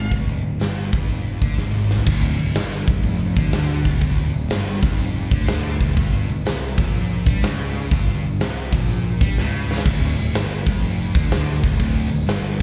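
Blues rock in a power-trio mold with a southern rock edge, this gritty, swaggering cut from a longer piece moves at 123 BPM in 4/4 with a swung eighth-note feel. A sludgy, dark distorted guitar carries the riff, picked and double-tracked with overdrive and a slapback echo, sitting in a low register. Beneath it, a picked electric bass adds a bright, growly fuzz tone, heard direct and amped with its own overdrive. The huge arena drum kit sits up front with bright cymbals, a punchy kick, a medium-tuned snare, hi-hat, crash and toms, and it plays fills at 1.6 and 9.4 seconds that lead into new sections. The harmony opens on a D power chord, shifts to D minor add11 at 2.1 seconds, moves to G diminished, and returns to D minor add11. It all sounds like a live gig heard through the venue's PA, with club reverb around the band.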